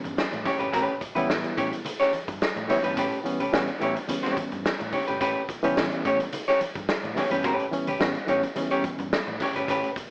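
Gritty and strutting, this brief funk fragment rides a straight 4/4 groove built on a single A9 chord. Up front, a vintage hollow-body jazz guitar plays clean, picked accompaniment with a dark, hollow-body tone. A barky, reedy electric piano jabs out stabs, lightly overdriven and shimmering with fast tremolo as if heard through its own built-in speakers. A raw garage drum kit sits forward with a punchy kick, a medium-tuned snare and hi-hat, its top rolled off and its smooth body ringing in a bright stone room. A round, foam-muted fingered electric bass lurks in the background, while very quiet congas add thick-skinned, damped, compressed hand percussion. Light reverb and an AM radio coloring give the whole piece a worn, lo-fi character.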